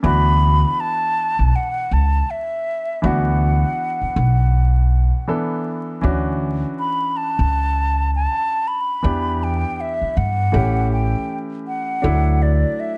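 An airy, hollow concert flute carries the melody up front with vibrato and a slapback echo, moving into a solo at 6.0 seconds in this smooth jazz-hop cut from a longer piece, set in D major at 80 BPM with a 16th-note swing. Beneath it, a woody, thumpy pizzicato upright bass anchors the low end while a clear, polished baby grand piano plays accompaniment through chords such as Dmaj9, Em7 and A7. Light reverb and vinyl crackle give the dark production a warm, worn glow.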